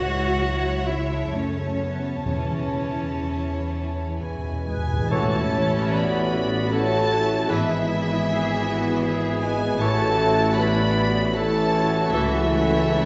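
A sul tasto violin section with light vibrato carries the melody over a second violin line in this solemn, elegiac slow romantic orchestral movement in A major and 3/4 at 61-81 BPM with rubato, where soft-attack violas, ringing fingerpicked harp arpeggios, dark, woody cellos and dark double basses lay the ground, round soft-mallet timpani enter at 2.3 s and play a fill from 4.2 s, and by 5.1 s airy flutes, a smooth clarinet, a clear oboe and bassoon, mellow French horns, bright trombones and a very quiet tuba have joined, all set in a reverberant concert hall heard from further back.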